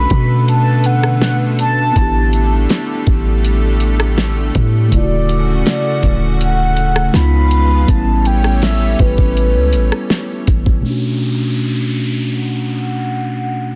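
Contemporary R&B at 81 BPM in B minor, this late-night excerpt carries a longing mood as a round, horn-like synth lead with vibrato sings the melody over a clean tine electric piano and a thick, detuned unison pad that pumps against the sidechain through chords like Bm9, Dmaj7 and C#7. Underneath, a boomy 808-style bass and a produced drum kit with a knocking kick, fat snare, metallic hats and rim clicks sit up front. At 10.8 seconds the bass, drums and pad drop out, leaving the lead and electric piano over an electronic downlifter, all set in a digital ambience with a dense, heavily limited master.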